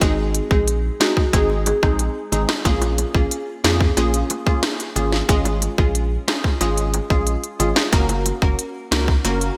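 Sultry and hypnotic, this brief dancehall excerpt at 91 BPM in 4/4 moves through Ab, Db and Gb over a tight, overdriven island pop drum kit with gated reverb, a deep, round sub bass, a crystalline, detuned wavetable pluck with chorus, low-tuned bongos tucked in the background, and a woody marimba with digital delay that appears only from 0.5 to 1.8 seconds, all framed by a bright 1980s-style digital production with light reverb.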